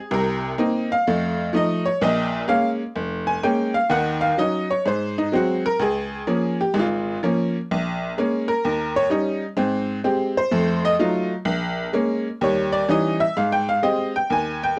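Worn, warbling old cassette tape with drifting pitch and light reverb colors this short fragment cut from a longer solo jazz piece. A jangly, metallic tack piano sits up front, playing a playful, swinging honky-tonk solo that ranges from deep bass notes to bright upper notes. Its percussive, vintage tone carries the whole 14.8 seconds over a circling progression of mostly seventh chords that returns to Abmaj7 at 13.3 seconds.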